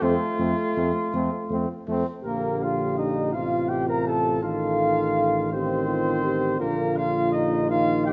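Classical brass quintet music in a noble mood and 6/8, cut from a longer piece, with a distant, roomy trumpet carrying the melody over a mellow flugelhorn second line and a present French horn. A warm, close-miked trombone with a soft attack sits in the background beside a tuba whose bass has a smooth top, while trumpet, horn and tuba share a light vibrato. The harmony moves from F to Bb at 2.3 seconds, passes through F7/A and settles back on Bb at 6.6 seconds in a moderate concert hall reverb.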